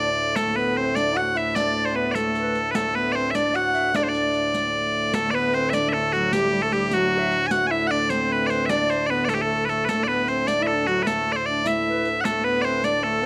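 Loud, piercing bagpipes carry the melody from the first moment, sitting up front with a continuous, brilliant tone in this rustic medieval dance in a straight 6/8. Beneath them a mellow duduk with folk-style vibrato and an airy tenor recorder, its wooden chiff and crisp attack set back in the mix, trace expressive second lines. A pedal harmonium holds a low, reedy drone that feels dark and breathing, grounding the ensemble with a smooth, ancient quality. A riq joins at 0.4 s, its dark jingles played with soft hands in the background of a live room. The piece moves into a new section at 5.1 s, all bathed in a moderate echo-chamber reverb with small-room ambience, and the clip is cut from a longer performance.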